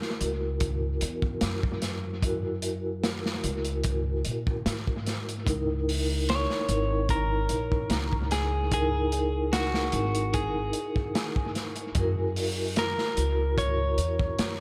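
A clean, compressed electric guitar carries the melody, picked and up front, entering at 6.3 seconds with a tape echo trailing its lines. This smoky, brooding trip hop excerpt moves at a slow 74 BPM in a straight 4/4. A crunchy breakbeat kit of hi-hat, tight kick and medium-tuned snare sits mid-forward with a gritty, saturated character and a rolled-off top, and analog delay is applied to it. Beneath, a woody, thumpy pizzicato upright bass joins at 0.2 seconds, while a soft-mallet vibraphone supplies mellow, airy, ringing accompaniment with tremolo, a fast motor vibrato and its own tape echo. The harmony rests on F#7, moves to C#m69, then returns to F#7, all within an echo-heavy mix carrying light reverb and a studio ambience.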